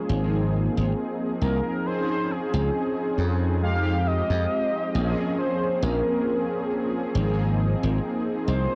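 A lightly swung sixteenth-note feel in 4/4 carries this faded, dreamy vaporwave fragment, where a punchy, glassy slap bass sits up front beneath detuned, brassy synth brass with subtle chorus and tape echo, and from 1.4 s a velvety, smooth synth lead adds its own chorus, vibrato and cassette-tape wear over ninth chords in a dark mix with light reverb and digital ambience.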